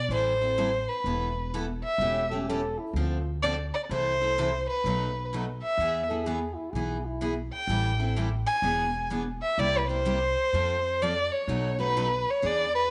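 An expressive bowed violin with vibrato, portamento and a slapback echo carries the melody up front in this bittersweet, fiery excerpt of acoustic jazz manouche swing in A minor at 127 BPM, over a thumpy, woody pizzicato upright bass on gut strings and a bright, freshly strung picked steel-string acoustic guitar, while a mellow, distant French horn with light vibrato adds a classical-style second line from 2.3 to 7.4 seconds, all heard in a small room with light reverb.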